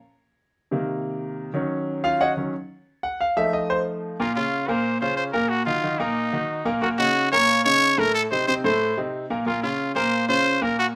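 Driving and fiery, this Latin excerpt races along at 182 BPM in a straight 4/4, set in Bb harmonic minor. A clear concert grand piano opens alone from 0.7 seconds, its intimate, polished and present sound carrying audible action noise, deep bass and long sustain as it moves through Cm7, Ebm7 and F7. At 4.2 seconds a growling trumpet takes the melody, raspy and gritty with a light vibrato, sitting up front in a pop-style solo. Beneath it the piano continues its accompaniment over chords such as Bbmadd9, Ebmadd9/Bb and Adim before returning to Bbmadd9. A moderate studio reverb surrounds the pair, and the clip is cut from a longer piece.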